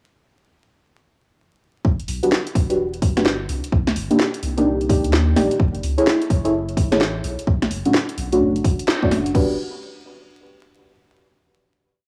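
UK garage two-step at 128 BPM in E dorian with a late-night, skippy mood: from 1.8 s a punchy, overdriven two-step kick locks with a thick, saturated sub bass with sidechain pumping, a house kit of bright swung hi-hats, cracking snare and crash joins at 2.0 s, and from 2.2 s soft, dark chord stabs treated with chorus, phaser and analog delay move one shape in parallel through Em9, Cm9, F#m9 and Bm9, the drums and stabs carrying cassette-tape colour within a vinyl-crackled spring-reverb room, before a band accent at 8.9 s and a final Em9 chord at 9.3 s.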